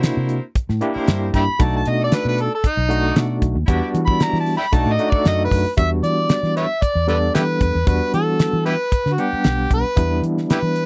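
An amplified, gritty harmonica takes the lead from 1.4 seconds, playing a jazz-style solo up front with scooped notes, tongue slaps and light vibrato over a smoky, mournful straight-eighth soul blues in E minor at 115 BPM. A barky, overdriven tine electric piano with fast tremolo through a combo amp carries the accompaniment. A dark, round, foam-muted fingered electric bass and a dry, damped 70s drum kit with a fat snare and tight kick drive the groove, while a distant, roomy horn section holds sustained chords until 5.5 seconds. The sound is a close, dry 1970s-style studio recording with little reverb, and the chords move from C7 through B7#9 and Em7.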